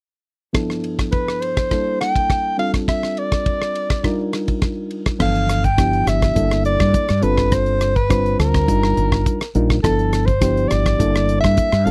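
A barky, reedy electric piano with light overdrive opens this funky electric jazz fusion excerpt at 0.5 s alongside a damped 1970s drum kit, setting a straight 4/4 groove at 104 BPM. The drums sit up front with a tight kick, dry hi-hat, ride and crash cymbals and rim clicks, while the bright piano comps over a cycle of G13, Gm69, F6/G and Ebmaj9/G. At 1.1 s a mellow soprano saxophone takes the soaring solo melody in a jazz style, its subtone, vibrato and smooth top carried by a slapback echo. A dark, round fretless electric bass joins at 5.2 s as the second section begins, anchoring the same chord cycle from low in the register. The close, dry 1970s-style studio sound keeps each part direct and present, and the passage is cut from a longer piece.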